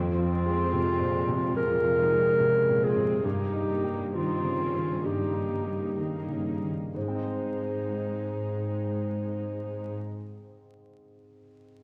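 Bathed in a wet scoring-stage reverb and the crackle and warbling pitch drift of worn old tape and vinyl, this tender, moving cinematic film-score fragment in Ab major unfolds in rubato 4/4 at 60-77 BPM, slowing through its first 7.0 seconds as a mellow, distant clarinet carries a second line up front over a soft, felt-muted upright piano, intimate sul tasto violas with light vibrato, a ringing fingerpicked concert harp and a bowed cello section in the background on the bass, the harmony moving from Fm through Eb/G to Ab at 7.0 s, with the piano lingering until 11.8 s.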